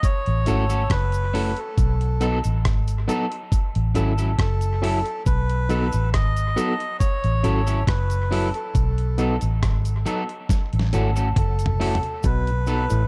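Dark, warm production with light reverb frames this short cut from a longer roots reggae piece, an uplifting, sunny groove at 69 BPM in B mixolydian that sways between A6 and B7 chords. A gritty, compressed sampler-style drum kit sits up front with a thumpy kick, medium-tuned snare, rim clicks, hi-hat and toms, and it plays a fill from 10.5 to 12.2 seconds, while a close, dry cabasa ticks away in the background. A round, punchy, foam-muted electric bass, dark and amped, anchors the low end just after the start. A slightly broken-up picked electric guitar adds accompaniment through spring reverb and dub echo, alongside barky, overdriven electric piano stabs shimmering with fast tremolo through a combo amp. Above it all, a breathy, nasal melodica carries the tune with a boxy small-room character and dub echo. Near the close, at 12.2 seconds, a stringy auto-wah clav slips in with a brief overdriven riff.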